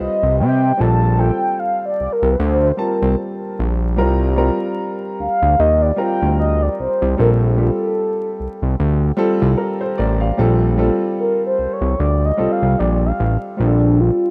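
R&B with a neo-soul lean, this soulful, relaxed excerpt moves at an easy 75 BPM in 4/4, with a gentle sixteenth-note swing and a home in Bb major. A mellow, horn-like synth lead carries the melody as a soft solo from the start, its round, warbling sawtooth tone thickened by chorus and vibrato, with a soft attack and sustained notes. Beneath it, a baby grand piano supplies smooth, vintage-toned accompaniment, while a fat analog bass sits prominently in the low end, its detuned, saturated sawtooth sound shaped by a filter pluck with a fast attack, evolving and sustained. The harmony drifts between Cm7, Bbmaj9 and Cm9, giving the passage a lush, unhurried sway. Light studio reverb and vinyl crackle lend the rough home-demo mix a cozy, lived-in character, with the bass stopping at 14.1 seconds just before the lead and piano finish at 14.3 seconds.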